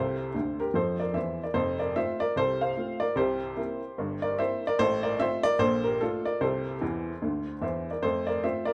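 A clear upright piano opens alone at the start of this short stride jazz fragment, moving into a fill at 0.3 seconds over a Bbmaj13/C chord that settles onto C and then F. The mood is swinging and exuberant, moving at 148 BPM in 4/4 with a swung eighth-note feel in F major, tuned to A4 = 442 Hz. Spanning F1 to F5, the piano sounds woody and intimate, with short sustain, audible action noise and an up-front, natural presence. A moderate plate reverb lends a gentle halo around the instrument. The harmony passes through C7, F/A, Bbmaj7 and C6 before a second fill arrives at 6.8 seconds and resolves onto F as the passage closes at 8.7 seconds.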